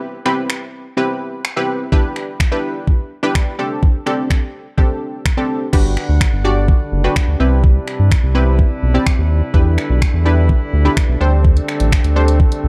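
This dance-pop excerpt moves at 126 BPM in G major with an upbeat, euphoric lift, cycling through Cmaj7, Em7 and D7sus4, then moving to Gmaj7 before the progression returns. A punchy, detuned chord stab opens the track, bright and up front with a filter pluck, chorus and sidechain pumping. A smooth electronic R&B drum kit joins almost at once, bringing a knocking kick, finger snaps, hi-hat and crash cymbal that carry a small-room character. At 5.7 seconds a round analog bass arrives, deep and evolving with a ring-modulated edge and sidechain pumping. A distant, roomy brass ensemble enters with it, holding classical-style sustained chords low in the mix behind the synths. The overall production is dark and digitally ambient, with the bass and drums sitting prominently at the front.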